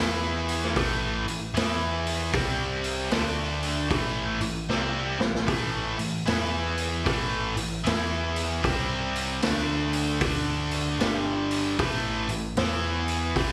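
A distorted, double-tracked electric guitar riff and a growly, punchy overdriven picked bass open this gritty, heavy excerpt of blues rock with a southern rock edge, joined at 0.5 seconds by a raw garage drum kit with a boomy kick, a medium-tuned snare and a saturated, rolled-off top. At 76 BPM in 4/4 with a swung eighth-note feel in A minor, the bright, up-front guitar moves through E5, A5, C5 and D5 power chords, and the drums play a fill at 4.7 seconds. The trio sounds like a live gig heard through a club's PA, bathed in club reverb.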